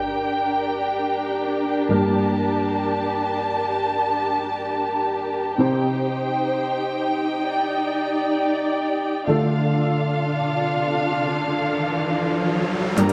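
This emotional, powerful festival progressive house passage opens with an electronic impact over a dark, mellow concert grand piano and a lush, up-front studio string section. The piano plays an accompaniment with deep bass and short sustain, treated with analog delay, while the bowed strings hold sustained chords with vibrato and a woody tone as a filter sweep moves across them. The harmony moves from Gm to Cm to Dm, and a dreamy hall reverb bathes the whole mix. An electronic riser builds from 10.3 seconds, and at 13.0 seconds the piece tips into a drum fill just as it cuts off. In that final instant, huge detuned supersaw chords with a cassette-tape character sit in the background, a fat saturated analog bass is barely audible, and an overdriven big-room kit adds handclaps and metallic hi-hats.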